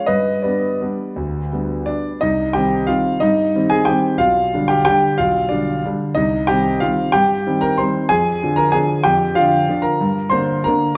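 A bittersweet, wistful classical piano waltz in C minor, this excerpt unfolds in 3/4 at a rubato 163-200 BPM on a solo concert grand that sounds intimate and up front, with deep bass, audible action noise and a natural tone spanning B1 to C6, set in a wet large studio reverb as it moves from an opening G into a section beginning at 2.2 seconds that passes through Cm, G7/B and Ddim/F before settling on Gm at 10.0 seconds.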